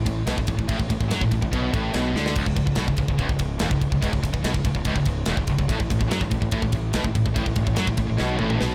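The tight metal drum kit stands out most, sitting up front with bright cymbals, a medium-tuned snare and a tight kick, pounding through this relentless heavy metal clip from a longer piece at 144 BPM in a straight 4/4. Beneath it, a growly, punchy fuzz bass rumbles low with an overdriven bite, while three picked guitars carry the riff from the very start: two overdriven electric guitars, one of them double-tracked and very quiet, and a tight distorted guitar, all sitting in the background. The drums come in at 0.1 seconds and throw in fills at 2.2 seconds and again from 8.2 seconds to the end. The harmony moves from Bm7/A to Badd9/C# and on to B7(no3)/A, keeping the mood relentless and heavy. The sound is dry, with little reverb on the mix.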